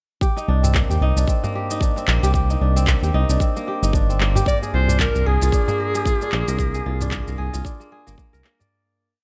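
A short, meditative organic downtempo piece in C minor at 113 BPM opens with a bright, ringing fingerpicked kora arpeggio carrying delay, set over a tight, soft electronic kick, a layered shaker-and-handclap beat with a swung sixteenth feel, and a very quiet, close and dry clay-shell darbuka. A smooth, detuned synth bass sits up front with a syncopated riff and sidechain pumping, while the harmony moves from Cm9 to Bb7 as a breathy clarinet enters at 4.5 seconds with vibrato and delay, shaping jazz-style arch phrases. The earthy groove, touched by light small-room reverb, fades out from 5.9 seconds.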